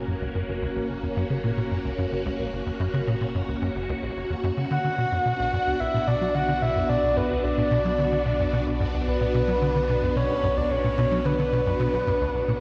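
A tight, punchy sequencer bass riff drives this straight 4/4 excerpt of hypnotic, expansive ambient space music, its wave-folded plucks treated with ensemble chorus and tape echo, while a round, deep analog bass fades in beneath it. A swirling, vintage string machine holds sustained chords through chorus, phaser and shimmer reverb as the harmony moves from F# to Bm at 4.7 s, where a breathy, flute-like synth lead enters up front with vibrato, chorus, shimmer reverb and tape echo. The whole recording sits in a lush concert-hall space with the worn, warbly pitch drift of old cassette tape.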